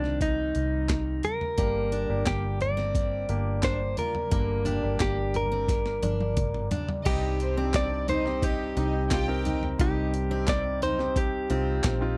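A clean, directly recorded electric guitar carries the melody up front in this dramatic, driving piano-driven pop excerpt in C minor at 88 BPM, over a clear, intimate grand piano with audible action noise, a dark, foam-muted fingered bass, and a gritty, compressed sampler-style breakbeat kit with a thumpy kick and handclaps whose fill leads into the second section, while a bright jumbo acoustic guitar picks a riff from 1.6 s and a distant, floating violin section adds a soft-attack second line from 7.1 to 9.6 s, captured in a dry, close 1970s-style studio sound.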